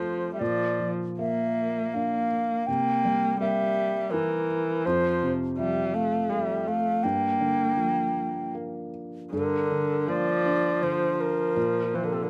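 A pure, woody baroque flute carries the melody up front with vibrato and tongued notes, touched by a slapback echo, in this longing, mournful Celtic slow air in G dorian, moving at 81 BPM in a rubato 3/4. Beneath it, a single bowed viola sings a warm, expressive second line with vibrato and portamento. A dark, intimate felt-muted upright piano accompanies through chords such as Bb, C7, F and Gm7, its action noise audible in a dry outdoor sound, all within a short fragment of a longer piece.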